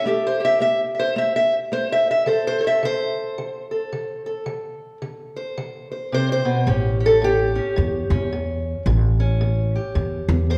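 Laid-back and rollicking, this short cut from a longer piece of acoustic country blues moves at 109 BPM in 4/4 with a swung eighth-note feel. A fingerpicked steel-string acoustic guitar carries the melody from 0.0 seconds, its dark, boxy parlour tone sitting up front and ranging from A2 to E5. An upright bass joins at 6.7 seconds, plucked pizzicato with a woody, warm body on steel strings, also placed up front. The harmony moves from a thirdless A7 to D5 at 2.3 seconds and lands on a full A7 as the bass arrives. The whole performance sits in a wet recital-hall reverb, giving the sound the lingering resonance of a church or concert hall.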